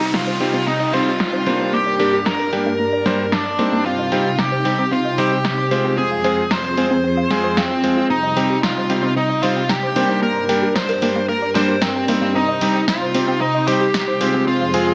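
A smooth, overdriven electric lead guitar sits up front, its picked melody trailed by tape echo across this nostalgic, danceable italo disco fragment cut from a longer piece. Behind it, a swirling, bright string machine holds sustained chords through ensemble chorus and phaser, with a filter sweep moving through its slow-attack, long-release pads. A round, detuned analog pluck plays chorused arpeggios in the background, also shaped by a filter sweep and tape echo. A clangy, vintage electric grand piano adds clear stabs, while a house drum kit with a punchy snare and low-passed hi-hats drives a straight feel under gated reverb. A background downlifter sounds for the opening 3.9 seconds, and the whole mix is set in a moderate plate reverb as the chords cycle between Cm, Gm and Fm.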